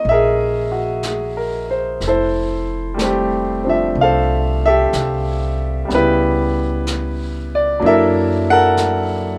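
A rough home-demo sound in a small, moderately ambient room frames this smoky, intimate swung jazz ballad, cut from a longer piece, where an up-front, clear and smooth vintage grand piano carries the accompaniment through F#9, Fmaj9, C#m7b5 and F#7alt chords over a dark, woody pizzicato upright bass, while a distant brushed drum kit on snare and hi-hat sits softly behind them.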